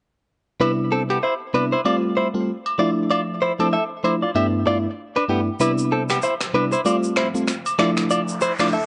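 A home cassette recording with a rolled-off top and a moderate spring reverb frames this joyful, breezy afrobeats clip in C major at 96 BPM, swung on the sixteenths. A crystalline, sparkling FM electric piano with chorus and a clean, bright, direct-recorded electric guitar riff with tape echo sit up front from 0.6 s over agogo bells and woodblock, cycling through Cmaj7, Fadd9, Dmadd9 and G6. An airy shaker, rim click and finger snaps join at 5.6 s, and an electronic noise sweep closes the cut at 8.2 s.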